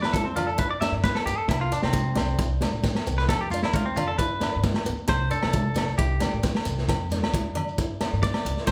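Highlife guitar band music in C major at 134 BPM, this carefree, joyful passage is cut from a longer piece and moves on a straight 4/4 feel over a cycling F5, G and Cadd9 progression. A clean electric guitar sits up front with a bright, twangy, compressed tone, taking the lead with picked arpeggios that run as a solo through the full 8.7 seconds. Beneath it, a boxy picked acoustic guitar adds swing-style accompaniment, while a woody pizzicato upright bass anchors the low end. The drum kit has a gritty, saturated character with a dark, rolled-off top, a tight kick and a medium-tuned snare, placed prominently in the mix. Ringing agogo bells sit close, while a grainy shekere and damped, high-tuned congas with a thick-skinned sound stay in the background, all set in a moderate large-studio reverb that gives the feel of a band playing live in one room.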